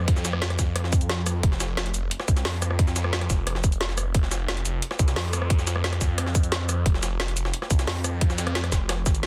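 A swirling, thick detuned saw bass with phaser and tube saturation sits up front in this tense, dark technical drum and bass excerpt, driven by a tight electronic kick and a layered kit of woody snare, metallic hats, rim click and shaker, while a gritty, pitched-up jungle sampler kit with overdrive and a high-tuned snare hovers in the background of a dry, dense, heavily limited mix.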